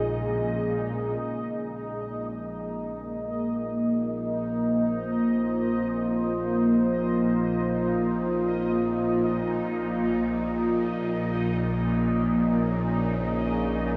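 Drenched in a vast, cathedral-like reverb, this ominous, cavernous dark ambient drone excerpt floats in free time. Up front, a deep, moody pad with a sub octave and a moving notch holds a Dbadd9/Bb chord through its chorus. Beside it sits a tense, string-like bowed drone with a phaser and vibrato, which takes a filter sweep in its first 1.2 seconds before fading in. Behind them, a softer bubbling texture of random, resonant filter steps adds restless motion.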